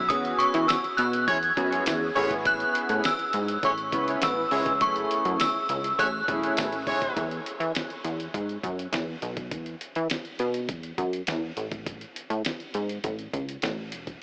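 A straight 4/4 groove at 102 BPM drives this slick, funky early-eighties boogie funk fragment, built on a dusty sampler-style drum kit with a thumpy kick, a fat snare and overdriven grit, and a punchy, plucky analog bass that sits up front for the full 14.2 seconds. Over chords moving from E6 through Amaj9 and F#m9, a chiming, warbling FM synth chime with ensemble chorus carries the melody, supported by a glossy chorused polysynth, a very quiet jingly tambourine and a tight horn section in the background, all of which drop out by 7.2 s to leave drums and bass over E5 and Amaj7. The mix is soaked in huge, dreamy reverb with an AM radio tint.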